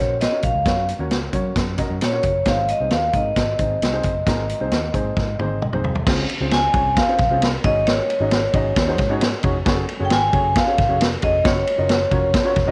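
A warm, danceable slice of uptempo 1960s-style soul moves at 133 BPM in a straight 4/4, cut from a longer piece and running about 12.7 seconds. A vibraphone struck with hard mallets carries the melody, its metallic, ringing tone kept band-limited with the motor off, while a dark, woody upright piano with short sustain fills in the accompaniment beneath it. A foam-muted, picked electric bass gives a round, amped bottom, and a vintage acoustic drum kit sits up front with a punchy kick, a medium-tuned snare, hi-hat, toms, and dark crash and ride cymbals under a rolled-off top. The harmony moves from Gb to Ab before a drum fill at 5.2 seconds and a piano fill just after carry the music into a second section at 6.1 seconds, where the chords turn to Dbmaj7, Ab7sus4, Gbmadd9 and Gbmaj7. Light reverb and small room ambience give the whole band a close, intimate setting.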